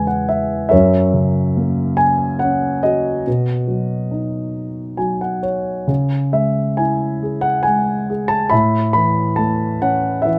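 A dark, mellow grand piano opens with a brief fill, then unfolds a tender, lyrical classical solo in 3/4 at about 70 BPM, its rubato phrasing moving through F#7 and B harmonies. After a second fill from 4.5 s, the music settles into C# minor at 5.9 s, turning toward A. The piano sits up front and intimate, with audible action noise and a vintage character, framed by a moderate studio reverb in this short section cut from a longer piece.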